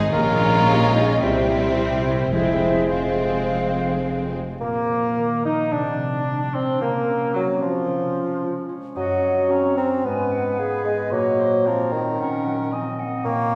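Heard from deep in a reverberant concert hall, this urgent, stormy classical passage for symphony orchestra unfolds with romantic rubato, cut from a longer movement. Lush, vibrato-laden violins carry the melody over a second violin line, quiet violas, a close but hushed cello section and smooth double basses, with distant, mellow horn chords. Around 4.4 seconds the strings and horns fall away, leaving the up-front bassoon, ringing fingerpicked harp arpeggios and the clear clarinet, dark cor anglais and hollow, tongued flute to carry the music onward to 13.6 seconds.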